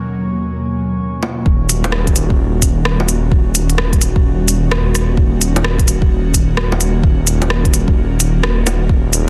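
An airy, breathy pad holding sustained, chorused chords with sidechain pumping opens this nocturnal, wistful future garage excerpt in Eb minor at 129 BPM with swung 16ths, joined briefly by a glassy, drifting-overtone texture in the background over an Abmadd9/Eb harmony; an organic electronic kit of bongos, cabasa, crisp hi-hat and rim click, re-recorded in a large room, enters at 1.2 s before a menacing, saturated detuned saw bass with a filter swell pumps up front on Eb1 and a deep, layered, tape-warm electronic kick arrive at 1.5 s as the chord shifts to Ebm7, all within a dense, heavily limited modern master showing lossy compression artefacts.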